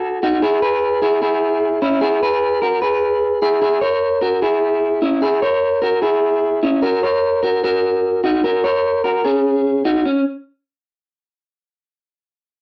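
Dry and close in a 1970s studio manner, this breezy, youthful indie pop excerpt puts a lone, slightly broken-up, lo-fi picked electric guitar through a small old amp up front, its harmonic tremolo and slapback echo colouring a straight 4/4 pass from E through C#m to F# before the guitar stops at 10.2 seconds.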